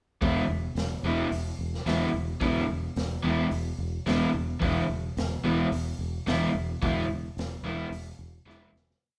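The recording has the sound of a band playing live in one room, with a moderate large-studio reverb around the players. This is a short, rowdy and swaggering garage rock piece in E major, moving at 109 BPM in a straight 4/4. A crunchy, overdriven electric guitar sits up front from 0.2 seconds, its bright, picked, double-tracked riff punctuated by stop-time hits. Underneath, a fingered electric bass, direct and amped with a foam-muted, growly punch, drives steady eighth notes on a low E. The raw acoustic drum kit brings a big rock groove, with a punchy kick, a medium-tuned snare and hi-hat in a pumping small-room sound that is saturated and gritty with a rolled-off top. The single verse begins fading out at 6.8 seconds, and a drum fill closes the piece from 8.5 seconds.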